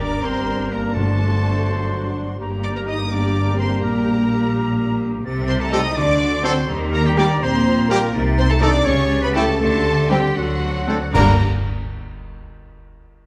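A stormy, urgent fragment of a fast romantic orchestral movement in G minor and a rubato 6/8 opens with strings, winds and brass together: a lush, vibrato-rich violin section carries the melody over a clear solo oboe, pure flutes, a mellow clarinet and a warm second violin line. Violas, cellos and double basses drive the accompaniment and bass, while French horns and a tight trombone section hold sustained chords and a distant trumpet adds stabs. Round soft-mallet timpani strike at 1.0 seconds, and the dramatic minor harmony resolves at 11.1 seconds into a sudden accent of timpani, dark clash cymbals and concert bass drum, all within a reverberant recital-hall sound.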